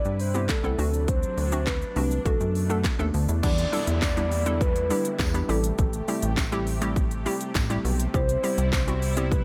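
A punchy, funky analog bass with a filter pluck sits up front in this driving, confident dance-pop excerpt at 102 BPM in E minor, alongside a house drum kit with a punchy kick, cracking snare, crisp hi-hats, handclaps, shaker and crash, while the bass and chords pump against the kick. A round, dark octave-layered synth lead with vibrato, phaser and tape echo carries the melody over a bouncy, hollow square pluck with ring modulation and a lush, airy unison pad in the background, moving through chords from Cmaj7 and D7 to Em7 and Am7. At 3.4 seconds a downlifter sweeps in behind the mix, and a jingly tambourine, distant as if in a large room, joins at 4.0 seconds, all in a dry, close sound.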